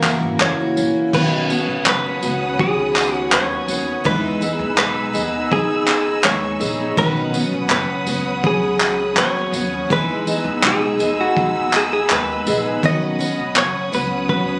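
Over a straight, unhurried 4/4 groove from a cloth-damped, thuddy drum kit with a tight kick, dark cymbals, handclaps and tambourine, this sunny, carefree acoustic pop excerpt sets a clean, scooped electric guitar melody up front with plate reverb. A shimmering, octave-doubled twelve-string acoustic picks out the accompaniment, while a background dreadnought guitar picks arpeggios and a woody pizzicato upright bass thumps underneath. At 1.1 seconds a veiled, muted string section enters with lush sustained chords, and the whole piece carries the character of a phone recording in a club-like room.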